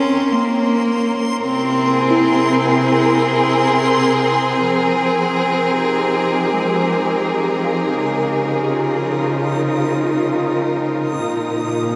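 A dreamy mix soaked in huge ambient reverb surrounds this serene, reflective ambient passage, cut from a longer piece and moving at a slow 55 BPM in 3/4. A rich studio string section sits up front throughout, holding smooth, bowed chords with vibrato and a shimmer reverb, while a single cellist plays an earthy, nasal melody with an airy bow and light vibrato until 3.6 s, trailed by delay and shimmer. Muted, felt-like synth keys add soft, dark arpeggios with a fast attack and chorus, very quiet beneath the strings until 11.2 s. A reedy pedal harmonium breathes a barely audible drone, and high above, a reversed, swelling texture with a granular, detuned shimmer lingers in the background. The harmony settles into F minor from 4.7 s, where that backwards texture fades in and the music moves through an Fm11 and a Db69 chord.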